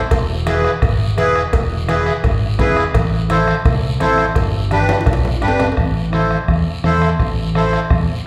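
Heard from further back in a reverberant studio, this fiery, driving cumbia excerpt at 169 BPM puts a reedy, sweet accordion with light tremolo tuning up front over a direct fingered electric bass, a distant soft-beater bombo, very quiet bright congas, a raspy guiro, and ringing cowbell and timbales that sit in the background through a drum fill from 4.9 s and stop at 5.8 s, as the chords move from E through Am and G back to Am.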